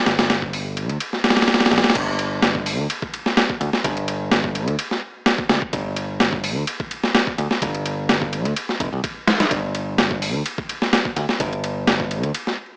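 Raw and funky, this short breakbeat cut from a longer piece rides a lightly swung sixteenth-note feel in 4/4. A sampler-style drum kit sits up front, compressed and gritty, with a thumpy kick, a high-tuned snare, hi-hat, ride and crash cymbals, all set in a small room ambience. A bright, punchy picked electric bass plays alongside in a low register, its direct tone placed just as close as the drums. The kick drops out from 1.0 to 2.0 seconds before the drop lands at 2.0 seconds and carries through to the end. The whole recording has a dry, hardware character with transformer saturation, vinyl crackle and a small-speaker sound, touched by light reverb.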